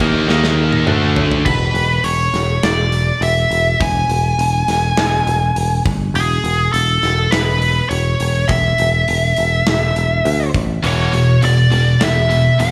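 A cranked stack guitar, a heavy high-gain guitar and a very quiet, double-tracked distorted guitar open this hard rock excerpt with a bright, picked riff. Under them sit a growly, up-front picked bass and a tight metal drum kit with a gritty, saturated big-room sound, and a drum fill rolls through the opening moments. At 1.5 seconds the riff guitars drop away and a nasal lead guitar with a parked wah takes the melody, overdriven and bathed in plate reverb, carried by bass and drums. The stack and high-gain guitars return at 10.8 seconds, the first with overdrive and spring reverb and the second with distortion and slapback echo. The energetic, swaggering performance comes across as a live club gig heard through the venue's PA, with light room reverb around the band.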